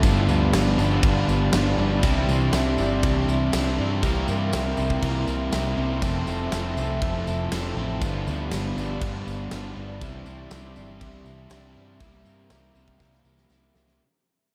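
Shoegaze and dream pop with a rock backbone, this dreamy, wistful passage is cut from a longer piece and fades out from 1.2 seconds onward, closing with a drum fill at 13.0 seconds. A huge arena drum kit drives it in a straight 4/4, with bright cymbals, a fat snare and a punchy kick in a big, natural room, while a jingly tambourine sits in the background until 13.8 seconds. Up front, a vintage foam-muted fingered electric bass gives round, amped low notes. Three guitar riffs fill the background: a thick, dark fuzz guitar with distortion and subtle chorus, a double-tracked crunchy overdriven guitar bathed in spring reverb, and a slightly broken-up electric guitar trailed by reverse reverb. Alongside them, a very quiet, shimmering twelve-string acoustic guitar picks octave-doubled arpeggios, and a deep, moody, nasal analog pad with a slow attack and long release holds sustained chords through chorus. 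The harmony cycles through G7, Cadd9, C7 and Fmaj7, and light studio reverb ties the whole mix together.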